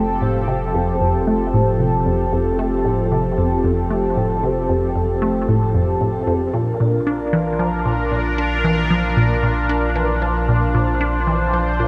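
Expansive and luminous, this ambient, sequencer-driven space music fragment sets an evolving, detuned sawtooth pad up front with chorus and shimmer reverb on its sustained chords, a juicy, squelchy blip pluck playing a riff through phaser and analog delay, and a deep, round sine sub bass beneath, within a wet spring-reverb room and an echo-heavy mix as the harmony moves from Fadd9 to Bb at 6.5 seconds.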